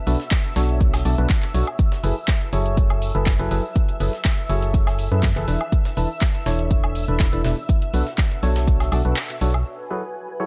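Piano house at 122 BPM in F# minor, soulful and energetic, where a punchy, up-front electronic kick and a hollow, organ-like FM bass with sidechain pumping drive a dark, decaying organ stab riff with lush chorus and delay, silky sawtooth string pad chords with ensemble chorus and vibrato, a layered house kit of handclaps, low-pass-filtered hi-hat and woodblock, a gritty, pitched-up breakbeat kit of shaker, hi-hat and snare in the background, and a very quiet, cloudy granular pad that enters at 10.1 seconds, all in a dry, dark production moving through Bm7, F#m11 and E7sus4 with a break at 9.2 seconds.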